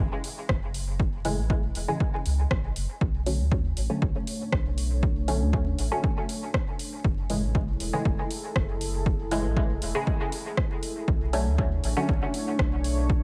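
A straight, steady 4/4 pulse is driven by a punchy, overdriven electronic kick sitting up front, with a layered deep house kit adding hi-hat and rim click, in this deep, hazy dub techno excerpt cut from a longer piece. A round, soft sub bass pumps under muted, detuned chord stabs carrying chorus, phaser, cassette tape grit and dub echo, moving between F#m9 and Bm9. From 3.9 seconds a dark, moody, wave-folded pad with slow attack and long release drifts in beneath a lightly reverberant, echo-heavy mix dusted with vinyl crackle.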